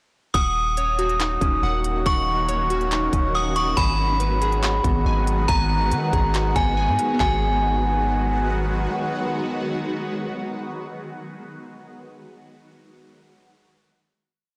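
A metallic, inharmonic FM bell loops a sparse melody from 0.3 s, joined by glassy digital keys repeating a falling arpeggio in eighths, a deep sine 808-style bass holding long sub notes with pitch slides that follow the kick, and a trap kit of hard-clipped kick, handclaps and crisp hi-hats with fast rolls in a half-time feel at 140 BPM. This spacious, ethereal cloud-rap piece in G# minor moves from D#m7 to G#m7, while a shimmering, granular pad enters with a slow attack under chorus, phaser and sidechain pumping, all within a blown-out, overdriven recording with light reverb. The drums drop out at 7.3 s, and the keys ring out last on the final chord, ending at 12.1 s.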